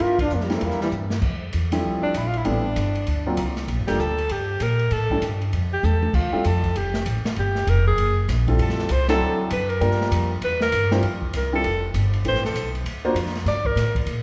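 Playful and swinging, this short excerpt of small-group swing and bop in F major moves at 196 BPM, as a punchy, scooped trombone line gives way within the first second to a bright, vibrato-laden alto saxophone solo from 1.2 seconds, carried by woody pizzicato upright bass, a dark, smooth drum kit with a boomy kick and drum fills, and a concert grand piano comping in two stretches, all set in the moderate reverb of a recital hall.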